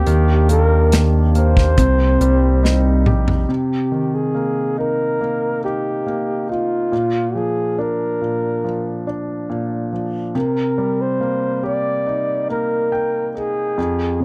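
A slow, straight 4/4 pulse at 70 BPM opens this melancholic, heartbroken pop ballad excerpt in C minor, where an acoustic drum kit with a punchy kick, a thick saturated sub bass and a mellow French horn section sounding distant in the background all play until 3.5 seconds, the drums closing with a fill from 2.6 seconds. The dark, breathy flugelhorn melody, whispered and jazz-inflected with vibrato and scooped notes, continues over only the concert grand piano, whose intimate tone, audible action noise and long sustain sit up front. The dry, close 1970s-style studio sound moves from Ebmaj7 and Cm7 to Bb before returning to Cm7.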